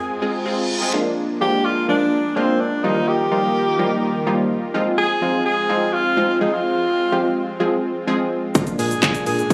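This summery, euphoric dance-pop excerpt at 126 BPM opens on a brief break, where a roomy, vibrato-laden tenor saxophone sings the melody over mellow, detuned supersaw chords pumping in the background, a reverse cymbal sounds at 0.3 seconds, and a bright, chorused analog pluck comes up front with accompaniment. The harmony moves through Fm, Bb7, Ebadd9 and Ab6, and at 8.6 seconds a punchy, overdriven pop drum kit of handclaps, hi-hat, kick and shaker arrives with a deep, round analog bass and woody, nasal mallet-like synth arpeggios. It sounds as though captured on a phone in the room, with club reverb, light reverb and digital ambience.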